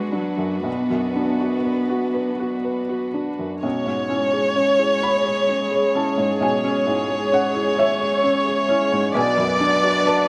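A slow, rubato 6/8 pulse of 38-44 BPM, felt in dotted quarters, carries this longing, reflective neoclassical piece for piano and strings, cut from a longer work. A felt-muted upright piano plays the accompaniment up front from the opening Bm chord, its tone mellow and intimate with audible action noise. Beneath it, a close, smooth solo cello carries a second line, while a dark chamber string section holds sustained chords in the background. At 3.6 s the harmony shifts to C#m/B as a rich chamber violin section enters with a focused, vibrato-laden melody, and a buzzing marimba with medium hard mallets adds woody, bright arpeggios from behind. A distant solo viola joins the accompaniment at 5.0 s with a slapback echo, before the chords return to Bm at 9.2 s. The recording is dry, made outdoors with little reverb or room sound.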